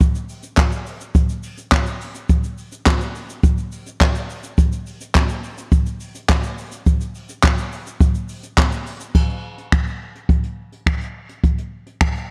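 A worn, warbling cassette-tape sound with drifting pitch and a light reverb colors this confident, energetic pop excerpt in straight 4/4. A lone acoustic jazz kit played with brushes sits up front in a small, natural-sounding room: a punchy kick, high-tuned snare and dark cymbals, along with hi-hat, crash, shaker, finger snaps and handclaps. The groove moves into a new section at 9.1 seconds and carries on to the cut at 12.3 seconds.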